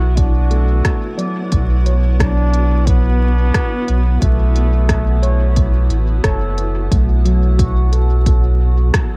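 A mellow trombone melody with light vibrato opens this meditative, deep ambient dub fragment in B minor at 89 BPM, over a blurred, evolving granular cloud pad, ringing stainless-steel handpan arpeggios filtered and echoed, and a round, up-front sub bass, with a deep electronic kick and smooth hi-hats and rim clicks from an electronic kit joining at 0.2 s under a dry, vinyl-crackled sound, before the trombone falls away at 6.2 s and the harmony shifts from Bm11 to B7sus4 at 6.9 s.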